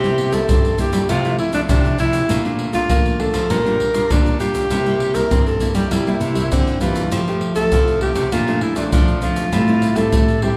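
Sunny and festive, this samba and choro fragment puts a vibrato-rich, jazz-style alto saxophone up front on the melody over a fingerpicked nylon-string guitar with fresh strings, a full-bodied sound and audible finger squeak, a second woody, old-stringed nylon-string guitar carrying the bass line, and tube shaker, pandeiro and tight surdo played with soft hands, the blend sitting in a large studio reverb as if heard from further back in the room.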